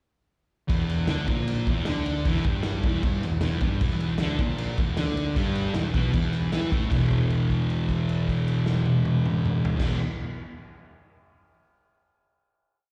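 A rowdy, raw garage rock blast kicks off at 0.7 seconds, with fuzz guitar, bass and drums all crashing in together on an E5 power chord at a charging 154 BPM in straight 4/4. The distorted, double-tracked fuzz guitar sits up front, picking out an octave riff from E2 to E4. Underneath in the background, an overdriven picked electric bass drives steady eighth notes and doubles the guitar riff, sounding punchy and direct. The acoustic drum kit is also up front, with a punchy kick, a medium-tuned snare, toms and crash cymbal giving a big rock groove, its dark, smooth tone rolled off at the top. At 6.9 seconds the riff gives way to a final chord, held until 9.8 seconds, and the whole piece comes across like a live gig heard through the venue's PA, wrapped in small-room ambience and recital-hall reverb.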